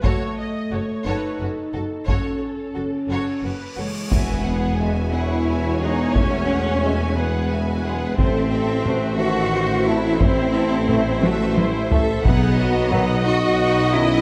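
An epic, cinematic orchestral cue in E major opens with full strings and taiko drums, struck with hard sticks, at a broad 59 BPM in a triumphant, heroic 6/8. Intense, distant violins carry the melody over a softer violin second line that slides with portamento in the background, while lush violas and a close, smooth cello section fill the middle and low end above focused double basses and dark, shadowy horn chords. A huge, bright cymbal swell rises from 3.5 seconds into an impact at 4.1 seconds, where a soft-attacked tuba joins the bass and a tight trombone section soon adds sustained chords in the background. The harmony moves from F#m through Eadd9 and Am to a closing B chord, with a drum fill leading into very quiet timpani struck with hard mallets from 12.2 seconds. A moderate scoring-stage reverb gives the ensemble a sense of space, and the passage is cut from a longer piece.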